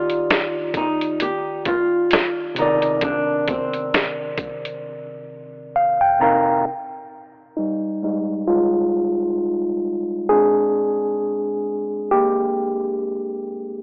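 Reflective and hazy, this lo-fi hip hop fragment, cut from a longer piece, sways in 4/4 with a loose swing on the sixteenths. A thumb-plucked flamenco guitar carries the melody up front, its warm acoustic tone trailed by an analog delay, while a mellow tine electric piano supports it with worn, slightly out-of-tune chords, lightly overdriven and pushed through a cassette-tape haze and low-pass filter, as if heard through built-in speakers. Beneath them, a sampler-style drum kit sits close with a compressed, pitched-down, muffled character: a thumpy kick, a medium-tuned snare and hi-hat. Guitar and drums stop at 4.8 seconds, leaving a silent gap before the electric piano returns alone at 6.7 seconds, a filter sweep moving over its solo until 13.8 seconds. The chords drift from Ebmaj9 and Cm9 into Fm9 and Bb7, and the whole recording has a dry, gritty, telephone-like quality with transformer saturation and a light reverb.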